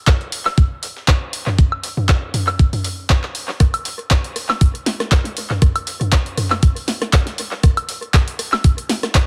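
An echo-heavy mix with light reverb frames this gritty, driving house fragment, a drums-only groove with a 16th-note swing cut from a longer piece. Up front, an overdriven electronic kick thumps, alongside a punchy analog drum machine whose dry snare, handclaps, hi-hat, rim click, toms and woodblock carry overdrive, studio reverb and analog delay. Beneath them, a very quiet breakbeat sampler-style kit adds compressed, pitched-up, tape-tinged hi-hat and a medium-tuned snare throughout.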